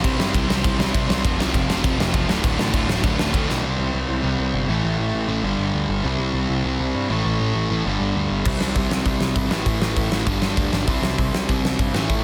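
A big rock kit in a pumping room, with a fat snare, punchy kick and bright cymbals, drives this aggressive, angry 199 BPM punk rock excerpt alongside three picked electric guitars (a double-tracked high-gain one set back in the mix until 3.5 seconds, a sludgy overdriven one also in the background, and a tight, bright distorted one) plus a growly fuzz bass, and a drum fill at 3.5 seconds leads into a new section where the two remaining guitars and the bass carry on by themselves until the drums return at 8.5 seconds.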